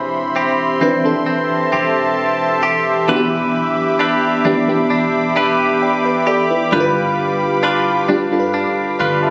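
A slow, straight 4/4 pulse at 66 BPM carries this moody, late-night R&B piece. A dark, warbling FM electric piano and a smooth, detuned analog pad with chorus sit up front over Cmaj7/E, Em7 and G7 chords, while a bright, twangy clean electric guitar plays arpeggios through warbly pitch drift and delay. A deep, round 808-style bass stays in the background, a very quiet, polished grand piano melody sounds only from 0.0 to 2.1 seconds, and a lush hall reverb and phone-in-the-room club ambience frame the sound.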